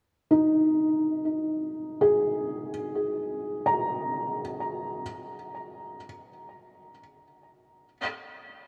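A felt-muted upright piano enters alone at 0.3 s in this spacious, melancholic ambient fragment in free time, its dark, boxy, intimate tone sitting up front with audible action noise as it rests on an Ebsus4 chord between Eb4 and Bb5 before the harmony drops away at 5.0 s; treated with delay and set in a long, wet cathedral reverb, the piano stops at 6.1 s, all heard through cassette tape in a passage cut from a longer piece.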